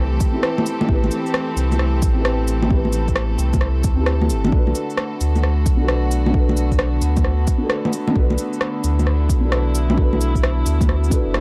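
A dry, gritty recording opens this brief cut from a longer future garage piece, ghostly and wistful at 132 BPM in 4/4 with a 66% swing on the sixteenths, moving from Am7 to Bm7 at 4.5 seconds. A felt-muted upright piano, soft and boxy with tape echo, plays accompaniment over sustained chords from an earthy chamber string section with light vibrato, while a round sine sub bass sits up front, all three pumping against the sidechain. From 0.2 seconds an overdriven, deep electronic kick enters together with tape-warm electronic cabasa, shaker, rim click and bongos placed close and forward.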